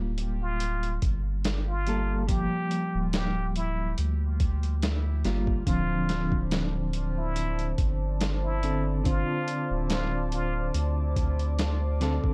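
A slow 71 BPM trip hop groove with a lightly swung 16th feel sets a cinematic, melancholic mood in D minor: a muffled, pitched-down sampler-style drum kit with a thumpy kick and a soft, round dub sub bass sit up front beneath a clean, fingered electric guitar treated with tremolo and tape echo, a breathy, plunger-muted trumpet carries an intimate jazz-style melody through dub echo from 0.4 seconds, and a moody, detuned analog pad with chorus enters at 5.7 seconds as the harmony moves from Gm7/D to Dm7, all within a dry, dark production.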